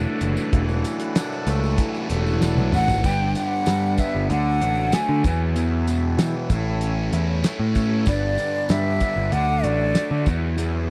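A bright, double-tracked fuzz guitar riff, edged with distortion and phaser, leads this kaleidoscopic, hypnotic psychedelic rock excerpt, sitting up front beside a round, overdriven picked bass. A cloth-damped drum kit with a fat snare, tight kick and dark cymbals thuds along with a jingly tambourine in the background, while a gritty tonewheel organ holds sustained chords through chorus vibrato and a slow rotary speaker. During a drum fill that begins at 2.4 seconds, a breathy jazz flute with vibrato and tape echo enters at 2.7 seconds, set in a dry, close 1970s-style small-room studio sound.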